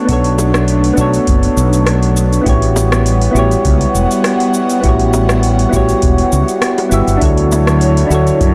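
Relaxed, warm sunset chillout at 101 BPM with a lightly swung sixteenth feel, where gentle electric-piano-like synth keys with chorus and digital delay sit up front over an airy, breathy pad, a dark, round fretless bass with tube saturation, a deep analog-style electronic kick, an overdriven R&B drum kit of metallic hi-hats, rim click and shaker, and tight, high-tuned bongos tucked dry in the background from 0.4 to 7.6 seconds, all moving through Bm9, A13 and Dmaj9 in a blown-out, overdriven mix with light reverb and digital ambience.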